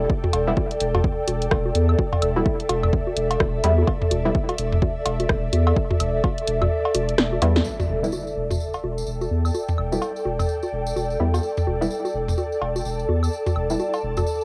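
A swung 4/4 groove at 127 BPM drives this hypnotic, sparse minimal techno cut from a longer piece in E minor, built on an overdriven, punchy analog kick, a drum-machine kit of hi-hat, rim click and snare, and layered electronic toms, bongos, cowbell and woodblock, all with a cassette-tape grit. A deep, saturated sine sub bass and an ethereal, detuned pad with ensemble chorus pump against the beat, while a muted, mellow filtered dub chord stab with analog chorus and delay drifts through the home-recorded cassette haze. The kick stops at 6.4 seconds, a drum fill and band accent lead to the second half, where a jingly, close tambourine enters at 7.6 seconds and a background electronic impact sounds at 7.7 seconds.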